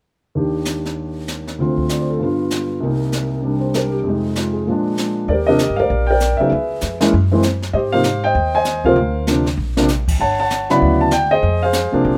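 A warm concert grand piano opens the piece at 0.3 seconds, carrying the melody up front with a deep low end, joined almost at once by an airy brush kit with dark cymbals, a high-tuned snare and a boomy kick, in a playful, sophisticated jazz piano trio swinging briskly at 195 BPM in Eb major. At 5.3 seconds a woody, plucked upright bass enters as the harmony moves from Ebmaj7 through Dbm7 and a brief chordless moment to Abmaj7, Bbadd9 and Gmaj9#11. A short drum fill arrives at 9.6 seconds before the passage settles on Fm, all set in light reverb and cut from a longer piece.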